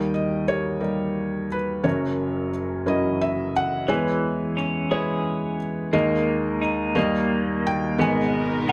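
A felt-muted upright piano carries the melody up front, its soft, mellow tone thinned by the felt and touched with audible action noise, in this intimate, melancholic acoustic folk-pop ballad in a straight 6/8, cut from a longer piece. At 3.9 seconds an electric guitar through a small old amp adds bright, twangy, slightly broken-up arpeggios with tremolo and a lo-fi edge. A distant, lush string section enters at 8.0 seconds with bowed, sustained chords full of vibrato, all set in moderate studio reverb.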